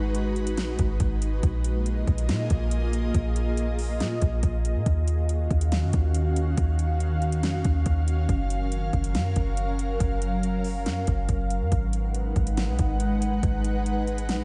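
A half-time 4/4 groove at 140 BPM drives this hazy, melancholic cloud-rap hip hop excerpt in Eb minor, where an up-front, overdriven electronic R&B kit of soft kick, fat snare and metallic hats enters at 0.1 seconds over a deep, boomy, clean sine 808 bass with fast-attack decaying notes, while an ethereal, airy detuned sawtooth pad with slow attack, ensemble chorus, built-in reverb and sidechain pumping sustains chords moving from Abm7 through Bb7sus4, Ebm9 and Gbmaj7, all set in a dreamy mix soaked in lush hall reverb.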